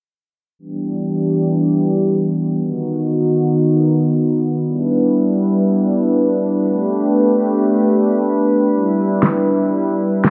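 Driving and cinematic, this synthwave excerpt in straight 4/4 is built on an analog pad holding sustained chords from 0.6 s. The pad is smooth and sawtooth-based, its detuned voices softened by chorus and a gentle attack, and it sits up front in the mix. A filter sweep runs across the pad for the whole passage as the harmony moves through Em7, B/D#, back to Em7, then Gadd9 and Em7 again. An electronic snare, fat, layered and produced, arrives up front at 9.2 s, shortly before the cut at 10.3 s. A moderate, lush digital hall reverb and a low-pass filter frame the sound with a hazy, spacious glow.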